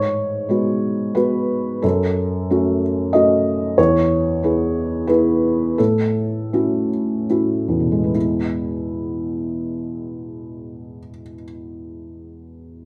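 A felt-muted upright piano carries this brief, peaceful fragment of neoclassical minimalist piano on its own, sitting up front with a soft, dark, thick-felt tone and audible action noise that makes it feel intimate and close. Set in E major and 3/4 time, the playing is rubato, moving between roughly 68 and 94 BPM, and it slows down from 2.8 to 8.1 seconds. The harmony drifts from G#m7 through F#m and E to A6 before settling on E as the second section begins at 8.1 seconds. The piano ranges from E2 up to D#5, giving a mellow, smooth, vintage character across its span. A wet studio reverb surrounds it, and the rough home demo mix adds to the private, unpolished atmosphere of this passage cut from a longer piece.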